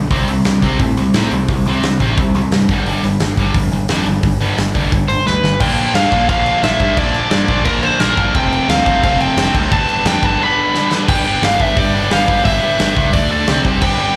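Rebellious and upbeat, this punk rock cut charges along at 175 BPM in a straight 4/4, with a bright, double-tracked distorted guitar riff carrying slapback echo, a growling overdriven picked bass, and a big-room rock kit with a punchy kick and a medium-tuned snare, all heard as a live club gig through the venue's PA. At 5.1 seconds a dark, biting overdriven guitar enters with a picked melody, and soon after a drum fill pushes the music into a new section built on Bb, F and G chords. Another fill at 10.7 seconds leads to a closing passage of D5 and C5 power chords before the cut ends.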